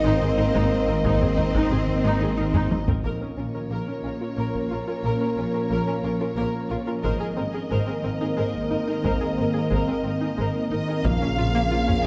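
A brooding, futuristic cinematic score excerpt in Bb minor at 60 BPM in 6/8 opens on lush, vibrato-rich violins carrying the melody over a background second violin line, viola accompaniment, an ethereal airy pad with chorus, very quiet mellow trombones and French horns, a twangy background resonator pluck arpeggiating through chorus and delay, and a bass of rich bowed double basses, very quiet cellos and a thick, menacing detuned saw bass that drops out at 3.0 s and returns at 11.0 s, while a close, dry taiko ensemble enters at 0.6 s and plays a fill before the chords move from Abadd9 to Bbm, all within a wet scoring-stage reverb.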